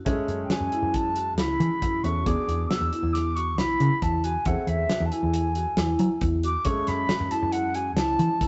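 An airy, mellow concert flute carries the melody through this driving, intricate progressive band piece in 5/4 at 137 BPM, over ringing metallic vibraphone arpeggios, a dark, round picked hollow-body bass up front, a dry 70s drum kit with a tight kick, and a polished grand piano low in the mix, all moving through F#m7, E7 and Am/E in a rough rehearsal-room recording with a moderate stone-room reverb.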